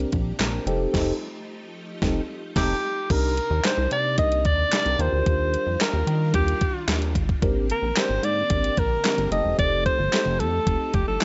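A dim, digital ambience hangs over this excerpt of early-eighties boogie funk, its top end rolled off above 7.8 kHz, giving the whole mix a soft, dated sheen. At 111 BPM in a straight 4/4 and in C minor, the groove feels funky and danceable, driven by a crisp 8-bit drum machine with a thumpy kick, medium-tuned snare, hi-hat, handclaps and crash, overdriven and bathed in gated reverb up front beside a glossy, dark chorused synth bass with a fast pluck. A clean tine electric piano colored by phaser plays the accompaniment, while a shimmering vintage string machine of violins holds sustained chords in the background through its ensemble chorus, and a hollow group handclap joins from 0.4 seconds. The band hits an accent from 0.9 to 3.1 seconds over rich harmony moving from Abmaj9#11 to F9, then settles into a cycle of Cm9, Ebmaj9, Abmaj9#11 and F9. At 2.6 seconds a breathy alto saxophone takes the lead up front, its vibrato, scooped notes and smooth top given a slapback echo in a polished pop style.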